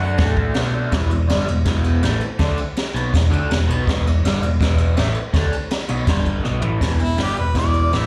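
Raw and swaggering, this fast garage rock excerpt at 163 BPM, heard live through a club PA, drives an overdriven, double-tracked guitar riff with a phaser over a round, punchy hollow-body bass and an up-front brushed drum kit with dark cymbals and a boomy kick, moving from E5 to G5 and back before a drum fill at 6.5 seconds hands off to a bright, close-miked harmonica solo with scooped notes and light vibrato at 6.8 seconds.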